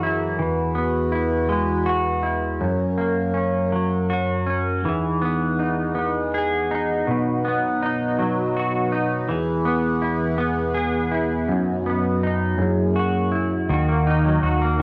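A clean, double-tracked semi-hollow electric guitar and a shimmering, dark chorused pulse-width pad open this swaying, romantic pop passage in 6/8, cut from a longer piece, moving through chords such as Eadd9 and Emaj7 before a punchy fingered electric bass arrives at 13.7 seconds on a D#m chord, all set in a moderate recital-hall reverb and colored by the warbling pitch drift of worn cassette tape.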